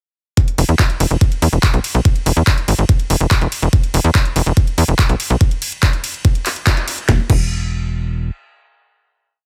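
This brief, complete psychedelic trance piece is hypnotic and intense, opening straight into a drop at 0.4 s as an up-front electronic kick pounds a four-on-the-floor pulse at 143 BPM in E major, tuned slightly low to A4 = 437 Hz. A layered, programmed drum kit joins the kick with a cracking snare on the backbeat, bright closed and open hats, handclaps, ride and crash, all sitting lower in the mix. Both the knocking kick and the kit carry overdrive and studio reverb, and the kick was re-recorded in a small room. Moments later a tight sequencer bass gallops in sixteenth notes between E1 and E2, its nasal sawtooth and square-wave tone shaped by a fast-attack filter pluck that decays and evolves, punchy and driving at the front of the mix. A band accent hits at 6.7 s, and from 7.1 s a final note rings out to close the piece, with little reverb overall keeping the sound dry and direct.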